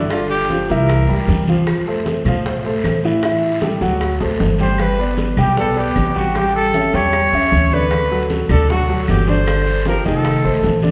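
Sunny and danceable, this short cut from a longer Afro-Cuban jazz piece moves with a straight 4/4 feel. A distant, roomy trumpet with light vibrato leads the melody up front in a jazz style, dropping out at 1.4 seconds and returning at 4.6 seconds to carry the tune to the close. A warm concert grand piano with deep bass and a natural tone supplies steady accompaniment throughout, while a dark, thumpy pizzicato upright bass with steel strings anchors the low end. Thick-skinned, medium-tuned congas sit in the background. Tight, high-tuned bongos, compressed and saturated, are played very quietly with soft hands; woody claves, a raspy guiro and grainy, mellow maracas fill out the percussion. A drum fill arrives at 4.2 seconds, and the whole ensemble rings in the lush reverb of a church or concert hall over chords that move through G5, C7, Fmaj7, D7, A7 and F7.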